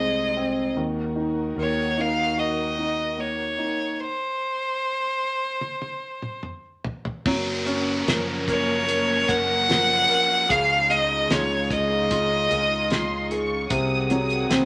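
A bright, intense solo violin carries the melody up front over an intimate concert grand piano with audible action noise, a dark, reedy string section in the background and a round fretless electric bass, opening this tender, heartfelt pop ballad. During a stop, a dry, damped 70s drum kit with a fat snare and tight kick enters with a fill at 5.6 s, and a background electronic downlifter arrives as the harmony moves to Gbmaj7 at 7.3 s. At 12.5 s a lush, distant violin section adds a high second line, and a wet studio reverb surrounds the sound.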